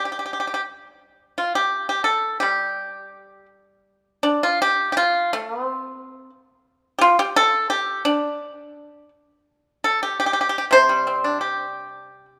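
Set in a light reverb, this short cut from a longer Chinese traditional piece features a solo pipa, dry, percussive and up front, plucked with fingerpicks in G shang mode, flowing and elegant in a rubato 2/4 around 81-92 BPM, with a new section opening at 3.9 seconds.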